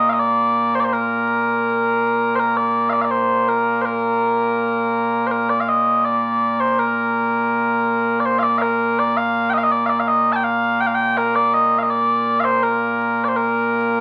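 Proud and stirring, this short piece of Scottish traditional pipe music, cut from a longer tune, features mellow, sweet small bagpipes playing solo and up front in a continuous line, in Bb major at 82 BPM in a straight 2/4. The phrase is stated and then repeated from 5.3 seconds, set in a small, wet room and heard through the crackle of a very old 78 rpm record.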